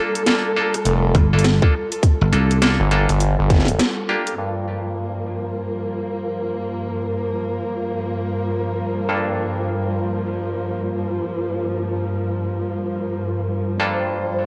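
A layered drum kit with a cracking snare and bright, filtered hats opens this swaggering, playful glitch hop fragment, soon joined by an overdriven electronic kick up front, both carrying grit and a small-room reverb over a swung sixteenth-note feel. Underneath, a gritty, aggressive synth bass with saturated oscillator-sync bite and a moving notch shares the low end with a dry, growly thumbed slap bass that is foam-muted and punchy. Sustained chords from a dark chamber string section, woody and bowed sul tasto with vibrato, open on a Gm7, while a twangy, nasal clav jabs stabs through a low-pass filter and analog delay, both parts pumping against the sidechain and coloured by cassette tape. The full band hits an accent at 3.8 seconds into a short break, and the drums and basses drop away by 4.4 seconds. From there the strings and clav carry on alone under a filter sweep on the clav, all within a light digital ambience and the lo-fi haze of a home cassette recording.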